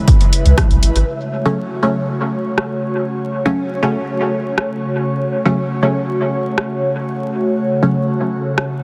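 A hazy, cavernous dub techno excerpt opens with vinyl crackle and light reverb over a dense, heavily limited master, moving at 120 BPM in 4/4 in F# minor with a straight feel. An airy, breathy pad holds sustained chords from C#3 to C#5 across the full 8.8 seconds, its slow attack and long release colored by chorus, phaser and sidechain pumping. A flickering, grainy granular texture sits in the background on E5, and a dry, punchy electronic kick, a deep, round sub bass and a very quiet, overdriven tom briefly join it before the texture drops out at 1.1 seconds. The harmony then shifts from C#m to F#m, and at 1.5 seconds a muted, detuned sawtooth chord stab enters, its filter pluck and short decay thrown into dub echo with chorus and phaser. Beneath it all, a dry analog drum machine keeps hi-hat and rim click running to 8.7 seconds, the hats softened by a low-pass filter and the snare lightly clipped and sent into dub echo.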